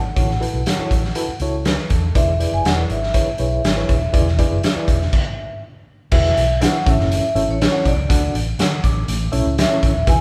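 Joyful and danceable, this 10-second excerpt of uptempo 1960s-style soul moves at 121 BPM in A major, with a mellow vibraphone played with soft mallets carrying the melody over a round, foam-muted vintage electric bass that plays from the start. A reedy, worn reed electric piano with fast tremolo, slightly out of tune, and a raw garage drum kit with a punchy kick and rolled-off top enter at 0.2 seconds, the drums sitting up front in a bright stone room. The band plays live together in one room with light reverb, and after a stop from 5.1 to 6.1 seconds a new section opens on an Eadd9 chord.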